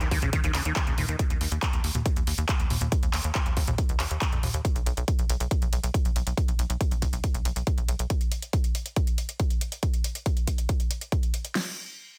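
A squelchy, resonant acid-bass arpeggio with phaser, chorus, delay and sidechain pumping opens this euphoric, soaring uplifting trance excerpt alongside a tight, driving sawtooth sequencer bass with a filter pluck and an overdriven drum layer of handclaps, metallic hi-hats and pumping toms, joined at 0.1 s by a punchy kick, huge snare and crash cymbal; the arpeggio stops at 1.2 s and the bass at 8.1 s, while the drums carry on in a dense, heavily limited mix with digital ambience.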